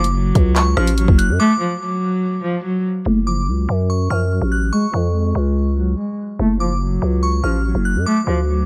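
A tense, dark drill excerpt at 144 BPM in a half-time feel opens on an intimate, sul tasto cello melody in F# harmonic minor with light vibrato. Beneath it sits a growling, buzzy 808-style bass, while a crystalline FM synth bell line with chorus and tape echo rings above. An electronic kit of hard-clipped kick, hi-hat, handclaps and rim click plays until 1.3 seconds and then drops out for a break, and from 3.1 seconds the cello takes on a filter sweep in a dry, dark mix.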